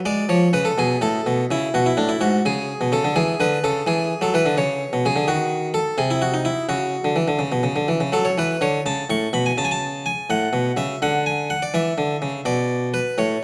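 Flowing and radiant, this short fragment of a baroque-style suite movement features a solo French-style harpsichord in 12/8 with a free, rubato feel, spanning G#2 to C#6 from 0.1 to 13.4 s. The instrument's single set of strings sounds bright, plucked and full, captured close and up front with a dry, detailed presence set in a moderate recital hall ambience. The harmony moves through C-sharp minor colours, with a diminished chord at 5.3 s lending brief tension before settling toward F-sharp minor at 8.1 s.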